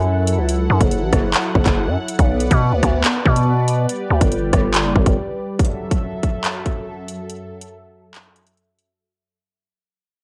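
Cold and tense, this short drill excerpt sits at 141 BPM in 4/4 with a half-time feel, set in F# phrygian and cut from a longer piece. A smooth, full-bodied sawtooth pad with detuned voices, soft attack and long release holds sustained chords throughout, treated with chorus, phaser and a cassette-tape color, moving from F#m7 to Bm to G and back to F#m7 at 5.6 seconds. Up front, a growling, buzzy 808-style bass with a saturated sine tone, fast attack and decaying notes drives the low end until it stops at 5.2 seconds, opening a brief break. The electronic drill kit, entering at 0.3 seconds, brings a hard-clipped kick, metallic hi-hats, handclaps and rim clicks, tape-colored and re-recorded in a large room yet placed close and forward. The second section fades out from 5.6 seconds, with another break from 7.3 seconds, all over a dry home cassette sound.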